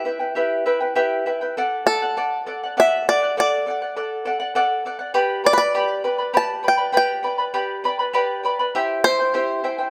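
A straight three-beat pulse carries this short excerpt of Andean folk, which feels both melancholic and festive as it moves from Em through D and G to C. A bright, twangy bluegrass banjo, played with fingerpicks and touched with tape echo, carries the percussive melody until 9.6 seconds. Beside it, a fingerpicked charango with shimmering double strings and some octave-doubled courses gives a warm accompaniment. Both instruments sit up front, caught by close, detailed microphones in light reverb.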